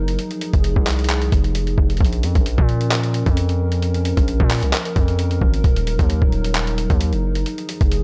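A half-time trap groove drives this brooding, melancholic hip hop excerpt. A boom bap sampler-style kit of compressed, pitched-down handclaps, hi-hat and a thumpy kick with vintage 12-bit grit sits up front from 0.1 s, beside an aggressive, heavy distorted 808-style bass with a noise layer and fast-attack, decaying notes. Beneath them a deep, detuned analog pad with chorus and ring modulation holds slow-attack chords through Fm7, Bbm and Ebm, and the production stays dark and dry, with little reverb.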